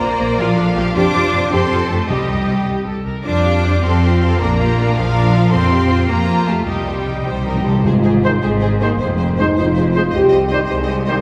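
Adventurous and heroic, this cinematic 6/8 fragment sets clear, vibrato-laden violins in two lines over focused violas, an intense bright cello section and a rich, smooth double bass section up front, with round soft-mallet timpani in the background filling from 6.7 s. A dark French horn section joins at 7.9 s as the harmony shifts, followed by very quiet trombones and clear trumpet stabs around 8.2 s, all heard from deep within a reverberant concert hall.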